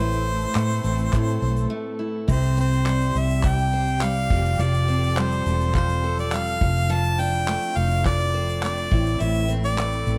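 A straight, easy-going 4/4 groove drives this sunny acoustic pop excerpt, with a dark, cloth-damped drum kit (tight kick, dark crash, handclaps and tambourine) settling in at 0.3 seconds beside a round, foam-muted vintage electric bass up front and a grainy, very quiet egg shaker. Over them, a clear, close-miked harmonica carries the lead with light vibrato and scooped notes, bathed in slapback echo and plate reverb, while a picked steel-string acoustic guitar adds finger squeaks and a lush bowed string section holds sustained chords in the background. After a short break at 1.7 seconds, a new section begins at 2.3 seconds, and the close, detailed sound carries only a light reverb.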